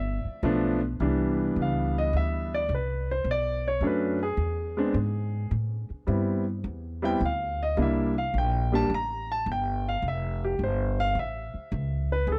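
Jazz piano trio in a relaxed, swinging 4/4 at 106 BPM in C major, cut from a longer piece. A warm concert grand with deep, natural lows carries the melody and takes a solo from 1.0 s over changes moving from G7 to Cmaj9, Bm7, E, Am7, C7 and F, while a woody, thumpy upright bass on gut strings plays dark pizzicato lines beneath it. Both instruments sit up front in a dry, close, 1970s-style studio sound with a small room ambience.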